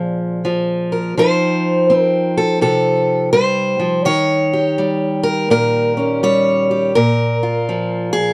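In a moderate booth ambience, an up-front, boxy parlour steel-string acoustic guitar with bright fresh strings and audible finger squeak plays this gritty, soulful fingerpicked country blues alone at 83 BPM with a swung feel, moving through Bb7, F7 and Eb7 before settling back on Bb in a short 8.3-second cut from a longer piece.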